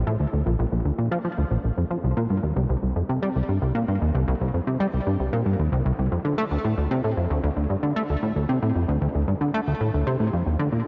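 A plucky analog bass carries this cosmic, luminous ambient fragment on its own, sounding from 0.0 to 10.8 s across a range from Bb1 to A3. Its punchy, wave-folded tone blends sawtooth, square and sine colours with a touch of ring modulation, and each note has a fast attack and a filter pluck before it decays. A subtle chorus, a cassette-tape character and a delay dress the bass, which sits up front in the mix. The pulse is a straight 4/4 at 114 BPM, tuned to A4 = 441 Hz. A lush hall reverb with a 2.6 s tail soaks the dreamy mix, whose highs are rolled off above 7.6 kHz, and the passage is cut from a longer piece.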